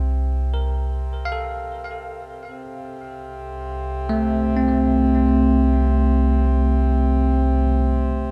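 A deep, ominous drone rumbles up front from 0.0 seconds, its slow attack and long release giving it a dark, sustained weight, while a reedy pedal harmonium breathes an airy tone alongside it. At 0.5 seconds a bell-like tine electric piano enters with bright, clean arpeggios that sound direct even as tape echo and shimmer reverb trail behind them. This short ambient passage, cut from a longer piece, feels reflective and melancholic. The harmony rests on a C7 chord with its third omitted, then moves to A minor over C at 2.4 seconds, where the second section begins. A moderate spring reverb and an echo-heavy mix give the sound a hazy depth, and a faint mains hum lingers in the background.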